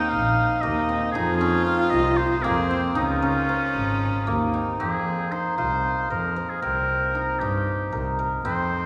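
An oboe sings a solo melody over a shimmering, ringing hammered dulcimer and an intimate, airy sul tasto viola line, with a clear, bowed double bass entering at 0.1 s, in this restless, pensive chamber piece in F minor, moving in 7/8 at 230 BPM in eighths. The viola drops out at 4.8 s as the music turns to a new section, leaving the oboe, the up-front dulcimer arpeggios and the intense bass to carry on. The sound is set in a wet, reverberant church or concert hall, and this short cut comes from a longer piece.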